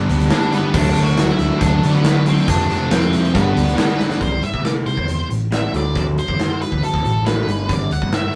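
Restless and anthemic, this short cut of quiet-loud alternative rock drives along at 138 BPM in G major. A big, up-front acoustic drum kit with a punchy kick and bright cymbals pushes under a round, hollow-body picked bass and a dark octave-fuzz lead melody, while three distorted guitars (one bright and compressed, one thick with dark fuzz, one sludgy, double-tracked and very quiet) play the opening riff until 4.2 seconds. After a drum fill at 4.0 seconds, a slightly broken-up, lo-fi guitar through a small old amp enters with tremolo arpeggios, all captured in a rough rehearsal-room sound with tube saturation and modest small-room ambience.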